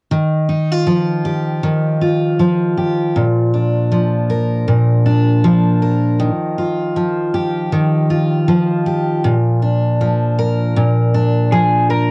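This excerpt from a longer piece opens with a picked steel-string acoustic guitar, dark and full-bodied with a dreadnought's depth, sitting up front and carrying the accompaniment from 0.1 seconds. The mood is easy-going and heartfelt, an acoustic pop groove at 79 BPM in 4/4 with a gentle sixteenth-note swing, in Eb major. The harmony moves from Ebadd9 to Bb at 3.2 seconds, and the guitar ranges from Bb2 up to Bb4. Just before the close, at 11.5 seconds, an electric slide guitar enters with a brief melodic phrase between Ab4 and Bb4, slightly broken-up and played with fingerpicks, also placed up front. Both guitars carry a cassette tape character, and the home recording sits in a small, wet booth ambience that gives it an intimate, lived-in feel.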